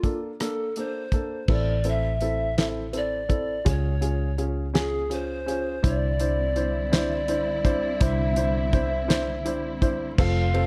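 Tender and heartfelt, this six-eight pop ballad moves at a slow 55 BPM with a straight feel, cut from a longer piece. A breathy, reedy bamboo pan flute carries the melody from the start, sounding distant with a soft chiff on its tongued notes, while a mellow, woody upright piano with short sustain plays the accompaniment up front. A damped 70s drum kit sits forward in the mix, its fat snare, tight kick, rim clicks and dark cymbals giving the ballad a dry, mid-focused pulse. At 1.5 seconds a round, foam-muted fingered electric bass joins, and at 5.8 seconds a lush bowed string section adds sustained chords with vibrato from further back. The harmony moves from Bbmaj7 through Am and Db to Cadd9, all set in a small room with a dark, warm production.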